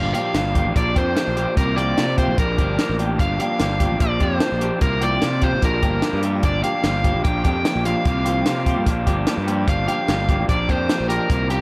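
Indie rock in G minor at 148 BPM, this bittersweet, moody excerpt moves in a straight 4/4 over a cycle of Gm7, Bb6 and C7sus4 chords. A crunchy overdriven guitar carries the picked melody up front, its bright tone thrown into dub echo. Beneath it, two electric guitars through a small old amp play riffs in a slightly broken-up, compressed register. One is fingered and lo-fi, and the other is picked and sits in the background with ensemble chorus added to its echo. A growly fuzz bass with overdrive pushes forward in the mix, while a compact cocktail drum kit supplies hi-hat, a punchy kick and a high-tuned snare with a dark, rolled-off top. Light reverb and small room ambience frame an echo-heavy mix that runs the full 11.6 seconds.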